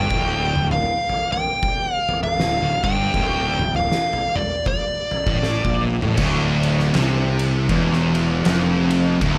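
A compressed fuzz lead guitar sits up front from the opening, carrying a high melody colored by distortion and delay, while two thick fuzz guitars grind out a low riff in the background, one of them very quiet. A growly, overdriven fingered bass doubles that low register, and an oversized, low-tuned acoustic drum kit joins almost at once with a punchy kick, fat snare, dark cymbals and a gritty, saturated character in a stone-room sound. The feel is brooding and heavy stoner and doom metal in 4/4, with swung eighths giving the slow groove a loping weight, all resting on a single minor chord. The lead melody drops out at 5.8 s, and at 6.2 s a tight, double-tracked distorted guitar enters in the background to thicken the riff for the final stretch of this cut from a longer piece. A small room ambience surrounds the parts, lending the dense, fuzzy wall of low guitars and bass a close, contained feel.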